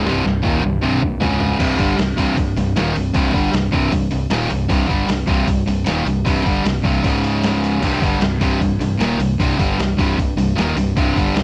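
A sludgy distorted guitar sits up front with a warm, overdriven, picked tone, joined by a brighter distorted electric guitar, both grinding through a riff between C2 and G3 with an overdrive and cassette tape colour. This is relentless, heavy metal in C minor at 154 BPM in a straight 4/4, cut from a longer piece. A lo-fi sampler-style drum kit comes in at 0.1 seconds with a fill of crash, hi-hat, kick, snare and toms, its pitched-down, muffled sound carrying a thumpy kick and a medium-tuned snare that seem re-recorded in a small room. Deeper in the mix, an overdriven fingered electric bass growls between C1 and G1. The harmony rests on C minor with brief moves to a D-flat power chord, and after the opening fill the main riff drives on to the end at 11.4 seconds. The whole take has the feel of a home cassette recording with light reverb.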